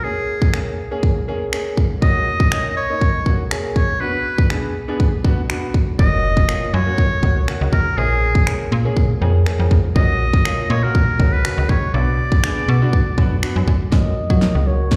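Heard as if through a live venue's PA with recital-hall reverb, this euphoric, carefree dance-pop excerpt in F# major at 121 BPM sets a classical-style oboe melody with light vibrato, low-pass filtering, delay and slapback echo over open, deep-toned grand piano chords that pump to the sidechain, before an up-front electronic drum kit with punchy kick, fat snare and finger snaps arrives at 0.4 seconds, a snappy FM bass with a metallic attack and sidechain pumping joins at 6.0 seconds, and a drum fill builds from 13.9 seconds.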